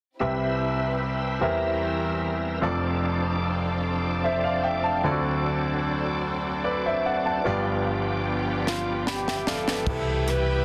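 A brilliant, up-front grand piano lays down the accompaniment in this jubilant, soulful slow gospel passage in 6/8, backed by a shouting tonewheel organ with slow rotary speaker, light overdrive, chorus vibrato and key click, while a lush, woody string section sits in the background. At 8.7 s a crisp drum kit with a high-tuned snare and dark cymbals plays a fill as a breathy, mellow alto saxophone enters with a brief melody, and a round, hollow-body electric bass arrives at 9.9 s as the harmony returns to Cmaj7. The mix is dense and heavily limited, set in a moderate studio reverb.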